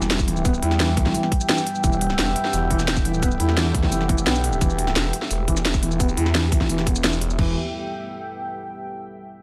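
A thick, swirling detuned saw bass, saturated with overdrive and churned by a phaser, drives this tense, aggressive slice of dark technical drum and bass, cut from a longer piece. Two layered electronic drum kits sit up front with a tape-warm character. One carries a cracking snare, crisp hi-hats and shaker, while the other adds a tight kick, toms and crash cymbal from 0.2 seconds. A felt-muted upright piano enters at 0.3 seconds with soft, mellow arpeggios and audible action noise, shaped by sidechain pumping, a sweeping low-pass filter and delay. In the background, a deep, moody pad holds sustained chords, its wave-folded, ring-modulated tone blurred by chorus and its own reverb, while a second, evolving pad adds texture, both pumping against the beat; this second pad lingers alone after the other parts stop, ringing out to 8.7 seconds in a light room reverb.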